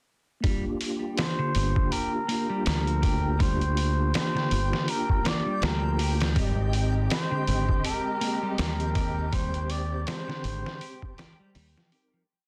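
Trip hop at 81 BPM in G phrygian, hypnotic and cinematic, built on a gritty, pitched-down sampler breakbeat with a thumpy kick and a punchy dub-style fingered bass up front, while a mellow tonewheel organ with fast rotary and tape echo holds close-voiced chords, a dark clean guitar repeats a 16-step arpeggio, a veiled cup-muted trumpet sings breathy, growling jazz motifs through dub echo from 1.2 seconds, a reversed granular swell hangs on a high G, and dark chamber strings enter at 6.4 seconds as Gm7 shifts to Abmaj7 before the fade-out from 8.3 seconds.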